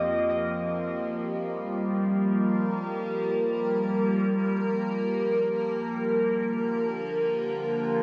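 Ambient music in free time, this short piece taken from a longer work feels weightless and serene, tuned slightly low with A4 at 437 Hz. An evolving wavetable pad sits up front for the whole 8.0 seconds, holding sustained chords with a slow attack and long release; its morphing, triangle-based unison tone is bright and colored by a phaser and its own built-in reverb. A fingerpicked concert harp opens alongside it with ringing acoustic arpeggios that pass through a tape echo and fall away after 1.5 seconds. The harmony rests on Eb before moving to Bb at 6.3 seconds. A huge, wet ambient reverb surrounds the sound, and a worn cassette character adds a warbling pitch drift throughout.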